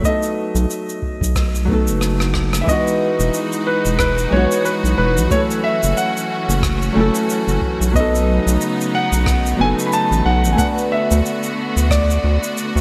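A round analog bass stands out in this relaxed sunset chillout piece in E major at 91 BPM, sitting up front from 0.5 seconds with a mellow, evolving sustain built from wave-folded square and sine tones. Above it, a concert grand piano with a natural character and a full low register carries the melody through delay, while a thumb-plucked acoustic flamenco guitar plays the accompaniment, also treated with delay. The beat swings gently on the sixteenths: an overdriven electronic kick, re-recorded in a large room, sits beneath an airy, polished shaker and rim click played with brushes and given gated reverb. Over an opening B7, a drum fill leads into the entry of a clear symphonic string section at 2.7 seconds, whose smooth, bowed chords carry a light vibrato as the harmony moves from Emaj9 through F#m7 and B9 to D6. Bright 1980s-style digital production and a lush hall reverb give this warm, unhurried passage, cut from a longer piece, a spacious glow.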